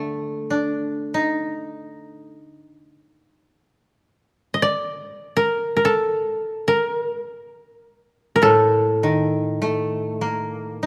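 Two fingerpicked kotos sound together from the start of this solitary, meditative excerpt of Japanese chamber music in free time, one carrying a warm, woody melody between G4 and Eb5 while a brighter second koto accompanies lower, from A2 to Eb4, both dry and up front within a recital hall's moderate reverb and a dark overall production, before the music slows from 9.3 seconds to the cut at 10.9 seconds.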